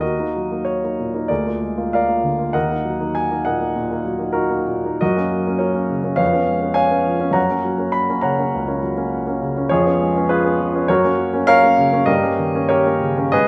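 This is a romantic classical character piece for solo piano in Eb minor, stormy and passionate, moving in 4/4 with a free rubato between 86 and 104 BPM. A warm, polished baby grand sits up front with long sustain, spanning Db2 to Cb6 across the full 13.5 seconds in a moderate recital hall reverb. The harmony moves from Eb minor through Bb7/D, shifts toward Gb major around 5.0 seconds, and lands on Eb7/G as this fragment is cut from a longer piece.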